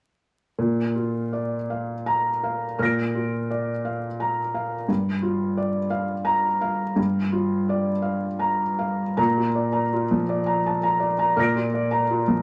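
Unhurried and rubato, the uneven beats in 3/4 stretch and settle at around 83 BPM in this tender, peaceful excerpt of neoclassical minimalist piano in Bb major. A felt-muted upright piano plays solo from 0.6 seconds, its mellow, intimate tone sitting up front with a boxy body and audible action noise. It moves from Bb to Gm7 at 4.9 seconds and returns to Bb as a new section opens at 9.2 seconds, all wrapped in a wet small-room reverb and a layer of vinyl crackle.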